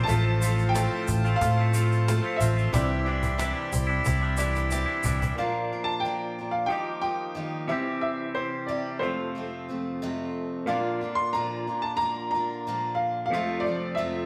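Nostalgic and hopeful, this short stretch of folk rock with a heartland rock lean moves at an easy, straight pace in 4/4, with the band playing live together in a moderately reverberant stone room. An up-front baby grand piano carries the melody, its warm, worn, open tone ringing with long sustain, while a bright picked dreadnought acoustic guitar accompanies it and a clean, compressed, twangy electric guitar plays a riff alongside. Further back, a reedy electric piano shimmers with fast tremolo and an accordion holds smooth, dark sustained chords with slow beating. A round, punchy fingered electric bass sits up front, with a snappy, dry cajon in the background and a grainy tube shaker, and this rhythm section drives the opening until a drum fill from 4.0 seconds hands over to the second section at 5.4 seconds. From there the bass, cajon, shaker and accordion drop away, leaving the piano, guitars and electric piano to carry the chord movement through Bb, Ebadd9 and C before settling back on F.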